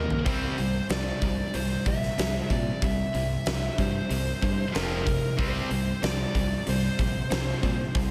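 A huge arena drum kit sits up front, opening this swaggering hard rock excerpt with a fill at the very start and then driving on with a fat snare, punchy kick, hi-hat and toms. Beneath it, a crunchy overdriven guitar and a high-gain distorted guitar play picked riffs in the background, both carrying slapback echo. A bright fingered electric bass, recorded direct, holds down the low end in a straight 4/4 feel. Over the top, a smooth, warm overdriven lead guitar picks out an anthemic melody, also touched with slapback echo. The harmony moves from C to F5 and back to C5, and a moderate concert hall reverb gives the whole band a big arena sound across this short 8.1-second cut.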